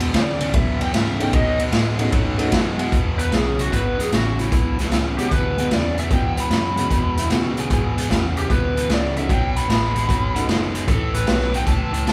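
A rollicking, soulful electric blues shuffle at 151 BPM in E mixolydian opens with a bright, overdriven stack guitar riff over a round, punchy muted bass and a gritty garage drum kit with a boomy kick sitting up front, while a dark, lo-fi lead guitar through a small cranked amp solos for the first 2.9 seconds. A mellow, worn, boxy baby grand piano with short sustain accompanies in the background from 1.2 seconds, and a slightly broken-up, compressed guitar adds a brief second line at 7.2 seconds. The chords move between E9, B9 and A9 as the band plays live in one large studio room with moderate reverb, cut from a longer piece.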